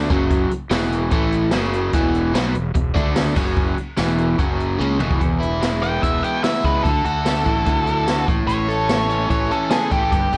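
An up-front, double-tracked overdriven electric guitar riff drives this swaggering classic rock piece at 147 BPM in E mixolydian, backed by a punchy fuzz fingered bass and a distant, roomy brush drum kit with dark cymbals, boomy kick and vintage sampler grit, until a drum fill at 4.8 s leads into a solo section where a dark, distorted octave-fuzz lead guitar enters at 5.8 s, the whole mix carrying cassette tape character and moderate studio reverb.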